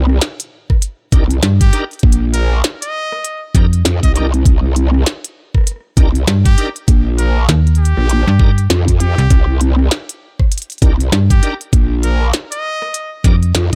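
Glitch hop with a playful, gritty swing, this short cut from a longer piece opens on a growling, saturated bass wobbling through a chorus, joined within the first second by a clicky, overdriven kit with a tiny snare and a knocking, up-front electronic kick. From about 1.1 s a bright, shouting tonewheel organ adds pumping stabs through a slow rotary speaker and delay, while a snappy, metallic FM bass sits up front beneath them. Over everything a brilliant trumpet carries the melody with light vibrato and scooped notes, roughened by 12-bit sampler grit and echoed by delay, all in a close, dry sound.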